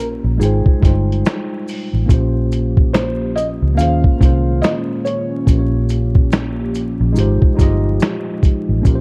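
A swung 71 BPM lo-fi hip hop groove in 4/4 rides on a compressed, pitched-down sampler drum kit with a thumpy kick, medium-tuned snare, hi-hat and finger snaps, set up front beside a round, punchy, foam-muted electric bass, while maracas sit faintly in the background. A worn, slightly out-of-tune tine electric piano comps through Bb dorian changes such as Fm9 and Eb13sus4, and a soft felt-muted upright piano with audible action noise carries an intimate melody until 5.9 seconds. From 2.1 seconds a deep, detuned analog pad with chorus and slow attack adds moody sustained chords beneath the dark, vinyl-crackled production, giving this melancholic, nostalgic fragment its hazy glow.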